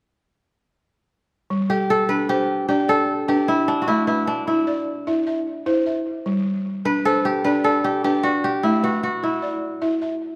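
Set in the lush reverb of a recital hall, this short, joyful cut of West African string and xylophone music in a straight 12/8 opens at 1.5 seconds with up-front woody, buzzing balafon arpeggios struck with soft rubber mallets and trailed by tape echo, joined moments later by a warm, fingerpicked kora melody with a crisp, ringing tone over a G, Am, G and A5 progression.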